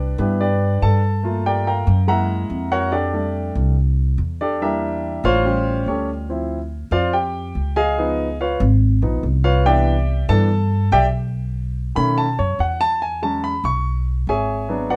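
A straight, danceable 4/4 pulse at 143 BPM drives this sunny Afro-Cuban jazz passage, cut from a longer piece. A concert grand piano carries a solo across the full 15 seconds, its intimate, natural tone rich in deep bass and marked by audible action noise as it ranges from D#3 to C#6. Beneath it, a pizzicato upright bass with steel strings supplies a woody, warm foundation between Ab1 and B2, sitting up front alongside the piano. The harmony moves briskly, opening on a rootless Cmaj9 and passing through colorful chords such as F#9, A7alt and Db9 before returning to Cmaj9 and B7, then landing on E6/9 at 13 seconds. A light reverb surrounds the duo.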